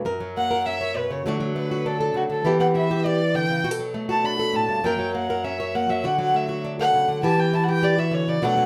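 A dark, woody violin, bowed sul tasto with vibrato, carries a mournful, dramatic solo from 0.4 seconds over a bright, boxy, fingerpicked acoustic flamenco guitar melody at 201 BPM in 4/4, both up front as the band plays live in one room with a wet studio reverb, cycling through F#, D, Em and Bm7 in this short cut from a longer piece.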